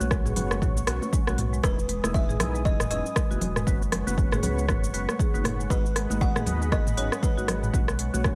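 A punchy, up-front electronic kick and a smooth-hatted deep house kit with rim clicks, shaker and toms drive this swung, earthy and hypnotic afro house excerpt, where soft-handed background congas, a round, deep analog bass, sidechain-pumped chords from a detuned dark pad, lightly overdriven tonewheel organ stabs through slow rotary speaker and delay, and woody marimba arpeggios set up a buzzing, hollow-boxed kalimba melody that enters at 1.6 seconds and ends at 7.6 seconds, all cut from a longer piece.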